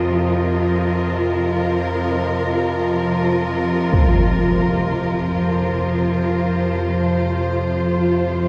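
Drenched in a vast, echoing cathedral reverb with a faint mains hum, this desolate, dark ambient drone in free time, cut from a longer piece, pairs a woody, lush cello section holding sustained chords on F5 with a nasal, tense bowed-like drone carrying phaser and vibrato, while a very quiet bubbling, resonant texture with random filter steps plays until 3.9 s, when a huge, bright, low-pass-filtered impact lands and a filter sweep begins on the drone.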